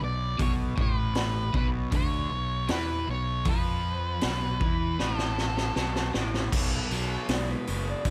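In a straight, unhurried 4/4, this smoky, brooding slice of blues rock and southern rock, cut from a longer piece, rides on a power-trio groove. A crunchy, double-tracked overdriven guitar picks out a bright riff over an up-front fuzz bass that sounds dark and round, while a raw garage drum kit joins a moment in with a boomy kick, high-tuned snare, hi-hat and crash, its sound gritty and saturated with a rolled-off top. Above them, an octave-fuzz lead guitar carries a shadowy, distorted melody through digital delay. A drum fill begins at 5.0 seconds and leads into a lead guitar solo over a B5 chord at 6.5 seconds. At 7.3 seconds a lo-fi second line, played through a small cranked amp, joins in, all within a small-room ambience.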